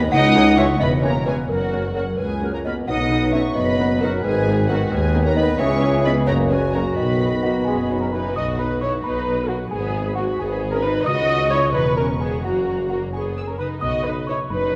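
A bell-like celesta melody leads this playful, quirky cinematic cue in B major at 88 BPM in 6/8, alongside an airy flute, ringing harp arpeggios and a bass of muted cellos, double basses and tuba, while veiled con sordino violins, violas, a clear clarinet, a vintage bassoon and mellow French horns fill in the harmony until the flute, clarinet and horns fall away at 8.1 s, all of it set in a wet scoring-stage reverb.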